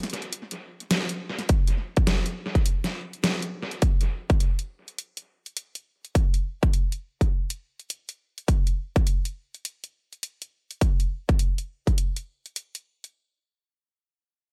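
The rhythm rides a swung sixteenth-note groove in 4/4 at 103 BPM, giving this glitch hop excerpt a swaggering, playful strut. A dubstep drum kit carries the whole clip from 0.0 to 13.1 seconds, its hi-hat and deep snare overdriven, layered and fed through tape echo that trails behind each hit. An electronic kick drum joins at 1.5 seconds and drops out at 12.0, sitting louder than the kit with a punchy, overdriven thump. Both drum parts sit up front and carry the character of being re-recorded in a small room. The mix has little reverb, but it is heavy with echo.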